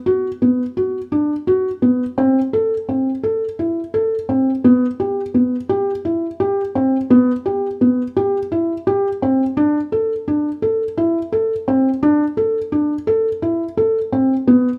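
Contemporary instrumental piece for solo felt-muted upright piano, cut from a longer work, moving in 7/8 at 171 BPM counted in eighths with a straight feel and an urgent, restless mood. The piano sits up front, soft and dark through thick felt, its mechanical action noise plainly audible as it plays between B3 and A4 from 0.1 to 14.7 seconds. Close, detailed microphones and light reverb keep the sound intimate, and a second section begins at 4.6 seconds.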